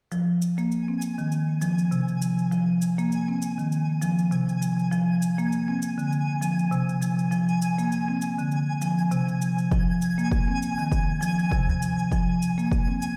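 Hypnotic and mystical, this organic downtempo excerpt moves at 100 BPM in F minor with a light swing, as an up-front marimba with soft mallets spins woody, rounded arpeggios through a low-pass filter and delay over a faint shaker, while a twinkling granular texture with a slow attack and built-in reverb shimmers high above from 0.6 seconds. The harmony drifts from Fm to a rootless Bb7(no3) and back, and at 9.7 seconds a punchy, produced electronic kick drum arrives up front, joined at 11.7 seconds by a brief, deep udu in the background. The whole sits in a lush concert-hall reverb, as if played on a big sound system in a bare room.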